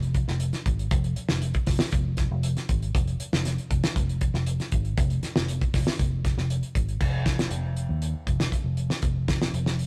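A straight 4/4 afrobeat groove at 118 BPM in F minor drives this funky, hypnotic fragment, where a vintage muted fingered electric bass, dark, round and punchy, holds the low end between F1 and Eb2 beneath an up-front, dry 70s drum kit with a fat snare, tight kick and dark cymbals, all captured as a rough rehearsal-room recording in a moderate stone room, with the groove shifting into a new section at 7.0 seconds.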